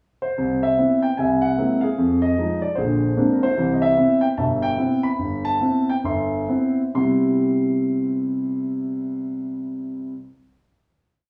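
A dark, mellow concert grand piano opens the piece alone with a short pickup at 0.2 s, then launches into a sophisticated swing jazz solo of catchy, motif-based hook phrases over a stride accompaniment with close voicings and deep bass. From 3.6 s the playing slows, easing into a final chord at 7.0 s whose long sustain rings out in a natural, up-front sound framed by a wet studio reverb.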